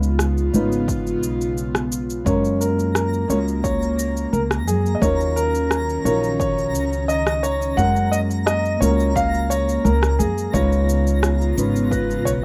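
Thumb-plucked nylon-string guitar with tape echo, a breathy chorused pad, a woody, up-front upright bass and tape-warm electronic cabasa and rim click open this blissful sunset chillout fragment, joined by a punchy overdriven electronic kick at 0.9 seconds, a dark, mellow baby grand piano melody with tape echo at 2.3 seconds and a faint, sparkling granular shimmer at 2.9 seconds, all in a dry, rough home-demo mix.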